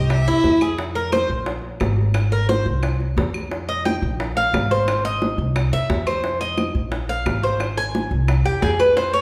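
A picked Cuban tres, metallic and up front with its doubled strings, carries this danceable excerpt of Cuban son and guajira at 176 BPM in straight 4/4, playing arpeggios from E4 to Ab5 and taking a solo from 0.8 seconds to the end at 9.2 seconds. A bowed violin with vibrato, portamento and a soft attack sounds a single expressive E5 in the opening 0.6 seconds before giving way. Underneath, a thumpy pizzicato upright bass with gut strings stays dark and present, moving between Ab1 and F2. Round, low-tuned bongos played with soft hands have a compressed, saturated edge, while woody claves sit dry and close in the background. The harmony cycles through C, Bbsus2, Absus2, Ebadd9 and Bb5 chords, and a wet large-studio reverb places the group further back in the room.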